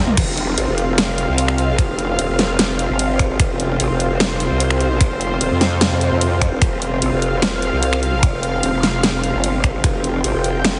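Heavily compressed and radio-like with a light reverb, this menacing, chaotic slice of heavy wobble dubstep opens on a drum fill and an F5 chord, then rides a half-time 4/4 feel at 149 BPM. A growling, saturated bass with a formant-filtered wobble, overdrive and chorus sits up front beside a lush, detuned sawtooth pad that pumps against the sidechain. A knocking electronic kick and a layered kit with a huge snare, snaps, toms and cymbals punch through a studio reverb.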